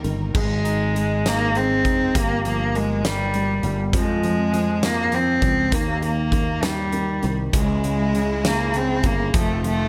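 A rich, bowed cello carries the tender, swaying melody up front from 0.4 s, its vibrato echoed by digital delay, in this 6/8 pop ballad excerpt in Ab major at 67 BPM, where a clear, polished baby grand piano supplies accompaniment, a growly fretless electric bass with ensemble chorus holds the low end, a huge arena drum kit adds a fat snare, punchy kick, hi-hat and crash, and a bright, lush studio string section briefly opens the piece before returning in the background at 7.5 s, all in a fairly dry mix with little reverb.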